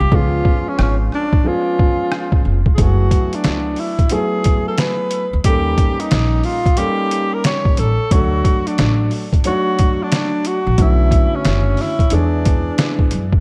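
Jazz-hop at a cool, relaxed 90 BPM in swung 4/4, cut from a longer piece, where a breathy alto saxophone with tape echo carries an up-front solo melody full of vibrato, subtone and scooped notes over a woody, growly pizzicato upright bass, a dark, mellow vintage baby grand piano with long sustain moving through chords from C#7 and F#m11 to Dmaj7 and E7, and a gritty, compressed, pitched-down sampler-style trip hop drum kit with a thumpy kick, rim clicks, an overdriven edge and hi-hats joining at 2.8 seconds, all set in light studio reverb.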